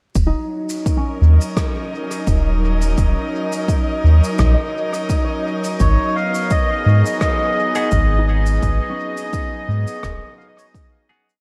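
A light reverb and small-room ambience, dusted with vinyl crackle, frame this short, spacious and hazy ambient dub piece in Eb minor, moving at 85 BPM in 4/4 with a gentle swing on the sixteenths. A round, deep sub bass sits up front with a dub-style line, joined by an overdriven electronic kick playing a soft, slow pattern and a sparse, echoing beat of shaker and rim click. A chamber string section holds floating, bowed sul tasto chords that shift slowly from Ebm7 to Abm7. In the background, a thumb-plucked concert harp rings through two slow arpeggio loops of unequal length that drift against each other, while a dark, airy wind-like noise layer holds a high note. At 5.8 seconds a reedy, nasal melodica steps forward with echoing call phrases built on a short motif. A very quiet, twangy clean electric guitar adds sparse, echoing chord stabs from 7.8 seconds as the piece fades out toward its close at 11.4 seconds.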